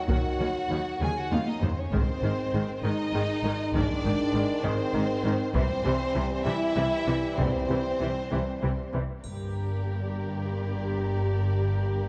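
Heard through worn, warbling old tape with dulled highs and a lingering concert-hall reverb, this dramatic, heroic orchestral film-score cut in 6/8 sets clear, close violins carrying the lush vibrato melody over a second violin line, smooth violas, background cellos and expressive double basses, while mellow French horns and vintage-toned trombones hold sustained chords in the background until the trombones drop out at 8.9 seconds, distant hard-stick taiko drums play with a fill at 1.0 seconds, and a dry triangle joins at 9.2 seconds as the harmony moves on.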